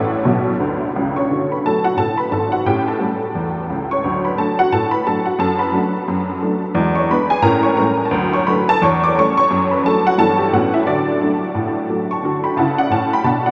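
Playful and exuberant, this brief cut from a longer stride-piano jazz piece swings at 176 BPM in D major, with a detuned, jangly honky-tonk upright piano playing solo and up front throughout, tossing off a fill at 0.3 seconds before moving through a lively run of chords such as A7, E7 and A7b9 and settling on D at 10.9 seconds, all bathed in a huge, echoing reverb that places it in a vast space.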